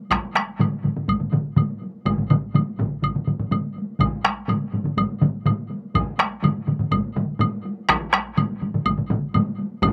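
An up-front taiko ensemble struck with heavy sticks in a small room leads this ceremonial, driving Japanese traditional taiko piece in a straight 4/4, joined throughout by a second heavy-stick taiko group in a small room, a distant hard-stick taiko group in a large room, a hard-stick taiko group in a live room and a close, woody woodblock, all playing from 0.1 s to 9.9 s with little reverb in a short excerpt cut from a longer piece.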